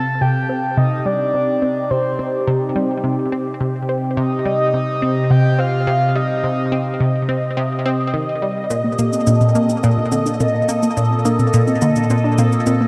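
This hypnotic, expansive stretch of sequencer-driven space music in C dorian at 106 BPM opens with a breathy, flute-like synth lead carrying the melody over a swirling, up-front phased analog pad and a round, nasal analog pluck riff colored by chorus, phaser, cassette tape and delay. The lead drops away at 7.3 s, and at 8.7 s, as the harmony moves from Cm to Bbmaj7, a warbling, dusty lo-fi pluck adds arpeggios while dry electronic cabasa and toms join in. A wet, lush hall reverb surrounds the music.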